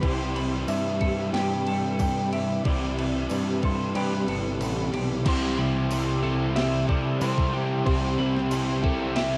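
Hazy and dreamy, this 92 BPM shoegaze and dream pop rock fragment layers a twangy lead guitar through a small old amp with tape echo, a shimmering chorused pulse-width pad, a twelve-string electric guitar's arpeggios with lush chorus, overdriven and raw garage guitar riffs, a growling overdriven picked bass, a thumpy 12-bit drum machine whose kick and snare drop out from 4.0 to 5.3 seconds, a jingly tambourine and a crunchy double-tracked guitar riff entering at 5.2 seconds, all over Cmaj7 moving to C in a lo-fi home cassette recording with light reverb.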